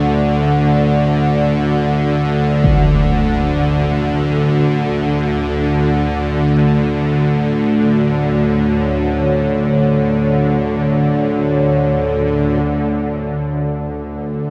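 Soaked in a cathedral-like reverb with a 6.7-second decay, this cavernous, ominous dark ambient drone excerpt floats in free time within a vast, echoing space. Up front, a bright, tense, string-like bowed drone holds low and sustained with vibrato, while a deep, moody pad of detuned sawtooth and sine layers with a sub octave and chorus carries slow-attack chords from D to F#m at 4.6 seconds and back to D at 12.6 seconds. A huge, filtered impact sounds briefly in the background at 2.6 seconds.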